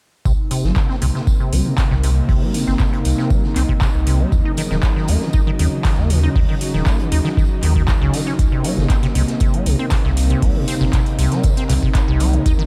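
Acid house at 118 BPM, hypnotic and gritty, built on an overdriven deep kick up front, a booming analog drum machine with metallic hats and handclaps, a background vintage kit of hi-hat, snare and tambourine, a thick saturated sine sub bass and a squelchy, resonant square-wave acid riff with sampler grit and analog delay, all over a smooth, warbling chorused analog pad pumping through Cm7 and Ebm7 while an ethereal, detuned airy pad joins at 1.1 seconds in a small-room ambience.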